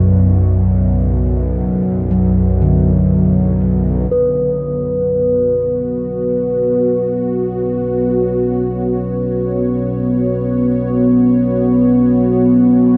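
Unsettling and desolate, this dark ambient drone in B minor drifts in free time, cut from a longer piece and opening on a Bmadd9 chord. A deep, detuned analog pad with chorus holds sustained chords up front beside a tense, string-like bowed drone with ring modulation and vibrato, which carries a filter sweep through the first 4.1 seconds and then fades in. A ringing bronze singing bowl with slow beating hovers above, while round, metallic gamelan-type gongs fade in with delayed arpeggios in the background until 10.1 seconds, all within a dreamy mix soaked in huge reverb over a faint mains hum.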